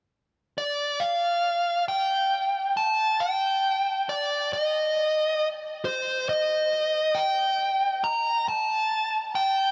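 A huge ambient reverb with a long, moderate tail surrounds this short rock excerpt in a slow 6/8. Up front, a dark, smooth electric lead guitar, picked and overdriven with analog delay, carries the melody from 0.6 to 9.7 seconds. The mood is cathartic and cinematic.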